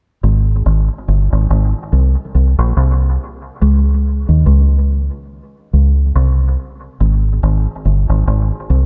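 A deep, fingered electric bass plays alone from 0.2 to 8.9 seconds in this short reggae clip cut from a longer piece, its foam-muted tone round and dark, sitting up front with a direct, amped character. Dub echo trails its low notes and a light reverb surrounds it, while the swung sixteenth-note feel gives the line a laid-back, sunny mood within a dark production.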